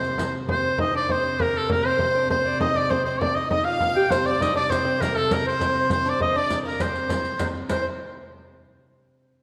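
Bathed in a lush scoring-stage reverb and carrying a dark sheen with traces of lossy compression artefacts, this driving, mysterious medieval dance fragment in 6/8 at 133 BPM sets a bright, vibrato-laden shawm melody up front over a woody, close fiddle line played sul tasto with portamento, a delicate fingerpicked lute in the background, a rich, floating viola da gamba drone on C3, and a soft-handed frame drum, while a vintage-sounding riq with bright jingles returns at 4.1 s.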